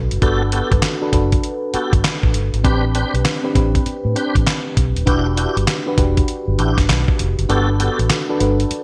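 A bright, 1980s-style digital production with light reverb frames this upbeat, bouncy snippet of new jack swing R&B, cut from a longer piece and built on a swung sixteenth-note feel. Up front sits a gritty, compressed sampler-style drum kit of thumpy kick, fat snare, hi-hat and handclaps, treated with gated reverb. Beneath it, a vintage muted fingered electric bass plays dark, round and foam-muted, with an amped edge. A mellow FM electric piano supplies soft, decaying chords with a fast attack, a faint noise layer and a chorus shimmer, moving through Gmaj9, Am11 and Em9 before returning to Gmaj9. A full, lightly overdriven tonewheel organ adds stabs colored by chorus vibrato, a slow rotary speaker and delay, and the kick drops out at 7.5 seconds for the closing moments.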